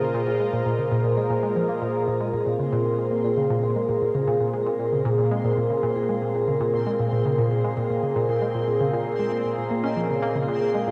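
Ambient, sequencer-driven space music with a cosmic, hypnotic mood, held on a single Bbm7 chord throughout this short cut from a longer piece. An airy, detuned sawtooth pad sits up front with sustained chords and a filter swell alongside a round analog pluck riff with a fast attack and decaying tail, while a mellow soft-mallet vibraphone rings out arpeggios in the background with delay. A quiet bubbling texture of random resonant filter steps drifts beneath, all wrapped in a wet spring reverb and the character of a home cassette recording.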